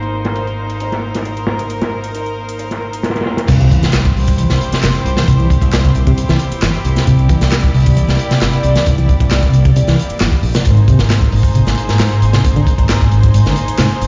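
A crunchy, gritty breakbeat drum kit with dark, filtered cymbals and a tight kick drives this funky, energetic 134 BPM breaks excerpt in C mixolydian, over a bright fingered electric bass, pumping gut-string ensemble chords, a background garage kit of overdriven handclaps and metallic hats, and a reedy tremolo electric piano riff with tape echo that enters with a very quiet impact at the drop at 3.5 seconds, all heard through a stone-room haze of vinyl crackle and a muffled top end.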